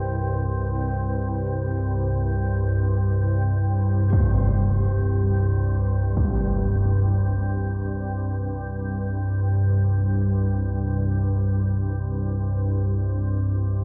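An up-front, organ-like drone with a slow attack and ensemble chorus sustains a low Gmadd11/C chord alongside a very quiet, bright bronze singing bowl struck with a wooden striker, its metallic ring slowly beating, while a huge, dark, low-pass-filtered impact lands from 4.1 to 6.4 seconds in this ominous, vast dark ambient drone in free time, cut from a longer piece and soaked in lush hall reverb with a dreamy cassette-tape haze.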